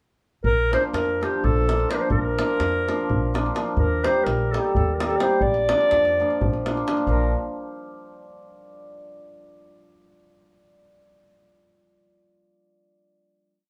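Balkan folk in the manner of a Balkan wedding band, this short, festive and virtuosic piece runs at 254 BPM in a straight 7/8 in Bb major, moving from Bb to Eb and back before a final chord from 7.1 seconds. A mellow, soft-attacked clarinet carries a motif-based melody in classical style, sitting up front yet distant and roomy. The cimbalom enters at 0.7 seconds with shimmering, hammered triad chords on the off-beats, while a woody, thumpy pizzicato upright bass plays root and fifth on the main beats and a deep, compressed, saturated davul drives a two-stick pattern, all captured as a band playing live in one room with moderate studio ambience.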